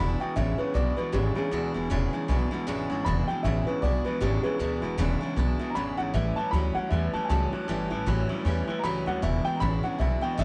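A swinging 4/4 groove at 156 BPM drives this rollicking, rowdy rockabilly excerpt in E mixolydian, moving from E7 to A7 at 6.1 seconds and back to E7 at 9.2 seconds. A thumpy, woody pizzicato upright bass sits up front, while a picked, full-bodied steel-string acoustic guitar plays the accompaniment. A twangy, slightly broken-up electric guitar through a small old amp plays a low riff, and a boxy, mellow upright piano with long sustain carries the melody, all in a small room with light reverb.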